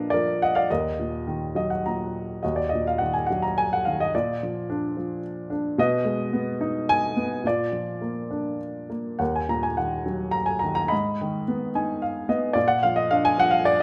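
In a rubato triple metre, this moody, cool fragment of lyrical classical solo piano features an intimate, woody upright piano placed up front, its short sustain and audible action noise set in a moderate stage reverb, with brief fills at 1.3 and 11.5 seconds as the harmony moves between minor chords and their dominant.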